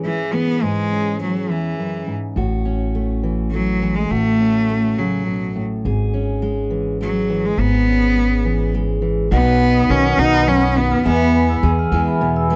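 A biting, nasal bowed cello carries the melody up front with vibrato in this uplifting 6/8 folk excerpt at 69 BPM in E major, over a full-bodied fingerpicked steel-string guitar, while a woody, thumpy pizzicato upright bass enters at 2.4 seconds and, from 9.3 seconds, a shimmering octave-doubled twelve-string guitar sits in the background beside ringing vibraphone arpeggios, captured as a dry, close 1970s-style studio recording with light reverb.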